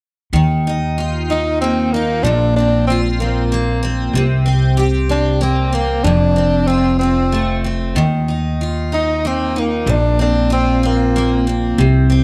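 A breathy tenor saxophone carries the melody in a heartfelt, swaying six-eight pop ballad at 63 BPM, its jazz-style vibrato and scooped notes sitting up front from 1.3 seconds. Beneath it, a bright, double-tracked steel-string acoustic guitar with fresh strings and audible finger squeak picks out chords moving from Ebsus2 through Bbsus2, C5 and F, while a woody, thumpy pizzicato upright bass on gut strings anchors the low end. Light studio reverb surrounds this short passage cut from a longer piece.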